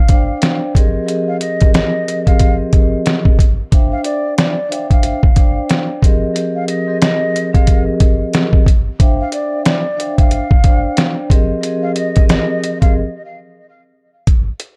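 Boom-bap hip-hop at 91 BPM with a swung 16th feel, tough yet reflective, in a dark production that trades Dm11 and Fm11 chords: an airy, close-miked concert flute with audible chiff, unsteady vibrato and digital delay carries the melody over soft-mallet vibraphone that rings with a slow motor vibrato and a cassette-tape tint, while an up-front, compressed, pitched-down sampler-style kit with a muffled, thumpy kick and a medium-tuned snare plays on alone through a break from 13.0 seconds.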